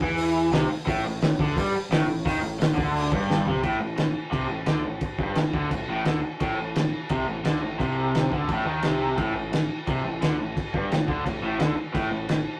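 A raw, bright, double-tracked overdriven guitar riff sits up front in this swaggering, rowdy garage rock fragment, backed by a growling, overdriven picked electric bass and a muffled, gritty, cloth-damped drum kit with a fat snare, tight kick and dark cymbals, whose quick fill at 3.3 s leads the shift from A5 to a rootless Gsus4 at 3.6 s, captured as a rough rehearsal-room recording with tube saturation and moderate reverb.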